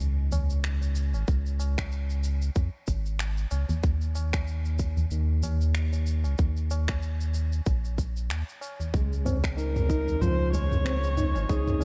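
Lightly reverberant and intimate, this excerpt of peaceful, organic downtempo moves at 94 BPM in 4/4 with a gentle 16th-note swing, built on a deep, round analog bass with ring-modulated, evolving tone and sidechain pumping, an overdriven electronic kit of cabasa, finger snaps and toms, and close, dry, high-tuned tabla that rings. A tight, up-front overdriven electronic kick joins at 1.3 seconds as the chords pass from Db5 to Bbsus4 to Dbsus2. A dark, full-bodied nylon-string guitar enters at 8.9 seconds with thumb-plucked arpeggios in diffuse ambient delay, and at 9.6 seconds an earthy bowed kamancheh takes the melody with light vibrato, portamento and tape echo.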